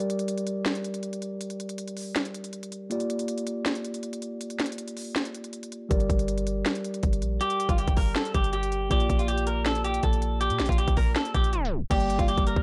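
A mellow tine electric piano and a trap drum kit open this menacing, hard-hitting trap excerpt in G minor, set at 160 BPM with a half-time feel. The piano sits up front, clean and direct, its tone softened by a low-pass filter as it alternates between G minor and B-flat sixth chords. The electronic drums carry a hard-clipped kick, a sharp snare, crisp hi-hats and a crash cymbal, all placed close and forward. At 5.9 seconds a deep, boomy 808-style bass arrives with a sine core, a noise layer and a fast attack that decays, and at 7.4 seconds a clean, picked electric guitar takes the melody, lightly thickened by subtle chorus and a low-pass filter. The whole mix has a dry, gritty hardware character with transformer saturation and digital ambience, and a tape stop at 11.5 seconds drags the groove to a halt before it returns to G minor.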